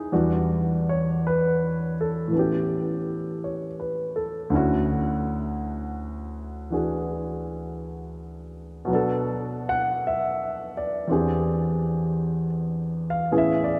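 A long church reverb with a 3.1-second tail surrounds an up-front, warm grand piano in this short fragment cut from a longer jazz ballad. Playing alone for all 13.8 seconds, the piano moves through a wistful, smoky progression of Em7, A9 and Dmaj9, then Bm7 and an E7alt, ranging from low D2 up to F#5 with a swung eighth-note feel in 4/4.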